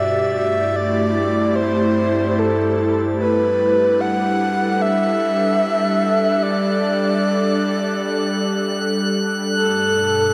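A breathy, flute-like synth lead sits up front, singing a soft melody in its upper-middle range with gentle vibrato, a sub-octave underpinning and a diffuse ambient delay that trails behind each sustained note. This is a free-time ambient piece with a warm, weightless mood, cut from a longer work. Beneath the lead, an airy pad holds sustained chords across a broad span, its detuned, warbling vintage tone carrying a faint noise layer, slow attacks and long releases. High above both, a glassy texture of drifting sine overtones fades in over the full 10.3 seconds, calm and set lower in the balance. Chorus colours all three parts, and the whole recording is bathed in a huge, wet reverb that lingers for seconds, while the harmony moves from Am7/G to Gmaj9 at 3.2 seconds and then to Bm7/G near the close.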